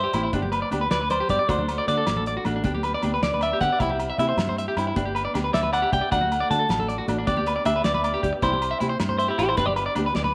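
A picked, up-front clean electric guitar carries the melody from the start with spring reverb, over a second clean guitar's slapback-echoed arpeggios, a round, foam-muted fingered bass, a fingerpicked nylon-string guitar with finger squeak, a gritty, cloth-damped thuddy drum kit with a fat snare and a fill at 0.5 seconds, ringing agogo bells and high-tuned congas in the background, and, from 1.5 seconds, a very quiet, mellow percussive tonewheel organ through a rotary speaker, all cycling through G, D and C in a carefree highlife guitar-band groove in 12/8 at 104 BPM.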